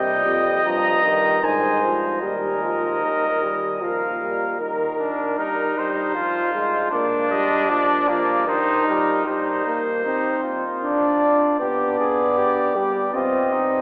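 Contemplative and serious, this classical imitative canzona for brass ensemble moves at 77 BPM in a straight 3/4, beginning in Eb major before turning to C minor at 9.3 s. A mellow, distant trumpet carries the melody up front, with a warm flugelhorn with light vibrato on the second line and a clear, vintage-toned euphonium in accompaniment. A smooth-topped bass trombone with light vibrato sits lower in the mix and drops out at 4.6 s, and the whole passage, cut from a longer piece, rings in a long cathedral reverb with the character of AM radio.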